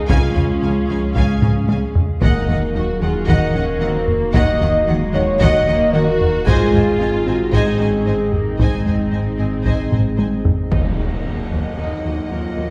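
Cinematic hybrid orchestral and electronic film score, tense and vast at 113 BPM, where close, dry taiko drums with heavy sticks drive alongside a dark, distant French horn section holding chords, lush vibrato violins carrying a focused melody over a second line, background violas, very quiet cellos and double basses, a smooth synth bass riff, a punchy pitch-drop sub bass, a crystalline detuned wavetable pluck arpeggiating, and a warbling, nostalgic tape-like pad with chorus, all moving from Db through Ebmadd9 and Ab in a reverberant hall heard from further back, with drum fills at 1.4 and 9.9 seconds before a huge impact lands at 10.7 seconds on Ebm.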